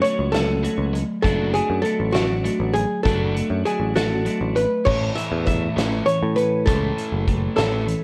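This short excerpt of carefree, wistful indie rock in 6/8 opens with a dark, clean hollow-body archtop guitar carrying the melody up front, over two overdriven electric guitars playing riffs and a loose drum kit. One riff guitar has a crunchy bite colored by analog chorus and slapback echo, while the other is compressed and picked, treated with spring reverb. The roomy drums sit distant in a studio space yet deliver a fat snare and punchy kick alongside crash cymbal and hi-hat. A direct, growly picked bass enters at 0.2 s. The harmony moves from F#m to D/F# before settling on A at 4.9 s, where a new section begins, and light reverb with the worn warble of old cassette tape and its pitch drift lends the mix a faded, nostalgic haze.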